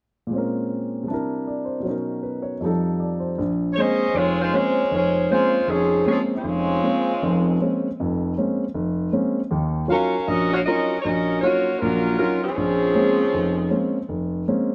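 A grand piano opens this sultry, swinging jazz passage at 0.3 seconds, its intimate, up-front tone carrying audible action noise as it moves through rich ninth and seventh chords in its accompanying role. At 3.7 seconds a dark saxophone section takes up the melody, playing with a vintage ensemble sound and light vibrato and sitting up front alongside the piano. The harmony settles on Bbm9, shifts to Ebm9 for a stretch, then returns to Bbm9 under the horns. Swung eighth notes give the whole passage a relaxed, lilting feel. A moderate echo-chamber reverb surrounds the instruments with a natural sense of space, and the piano carries on to 14.7 seconds, where this cut from a longer piece ends.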